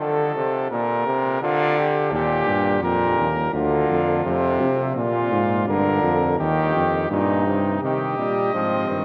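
Stately yet lively, this short cut from a longer classical canzona for brass ensemble moves at 84 BPM in Eb major, its imitative lines set in a wet, resonant cathedral space. A clear, lightly vibrato-touched flugelhorn carries the second line while a brilliant trombone supplies accompaniment from the start, joined at 2.1 seconds by a mellow, punchy bass trombone beneath chords that pass from F through Bb, Eb and Dm7. At 7.8 seconds a distant, mellow trumpet enters with the melody on a single high Eb as the harmony turns to C minor.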